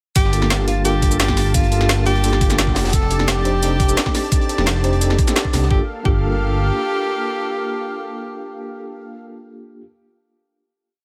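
This soulful, rolling liquid drum and bass piece in G minor moves at 173 BPM, with a rolling two-step groove from an overdriven drum and bass kit with a woody snare and bright hats, a knocking electronic kick, and a very quiet, gritty looped breakbeat underneath, all dropping out by 6.2 seconds as the drop gives way to a final Gm9 chord at 5.7 seconds. A deep, rumbling detuned saw bass holds long gliding notes up front, while a lush, airy unison pad pumps with sidechain movement and a worn, slightly out-of-tune tine electric piano adds syncopated rootless chord stabs through tremolo and dub echo over the Gm9 and F13 harmony. On top, a mellow tenor saxophone with vibrato and scooped notes states jazz-style call phrases through delay, all set in a small room ambience.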